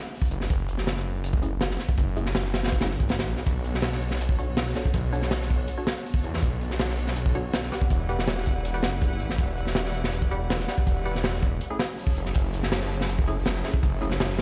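Drum and bass in a jungle vein, nostalgic yet frenetic, this passage opens with a crunchy, dark breakbeat kit of punchy kick, medium-tuned snare and hi-hat, sitting up front beside a thick, menacing detuned saw bass roughened by tube saturation. From 1.4 seconds a muted, mellow dub chord stab with chorus, dub echo and a filter sweep sits in the background, and at 3.5 seconds a studio string section adds bowed, vibrato-laden sustained chords carrying vintage 12-bit sampler grit. It all sounds as if played on a big sound system in a bare stone room, with the highest frequencies dulled away.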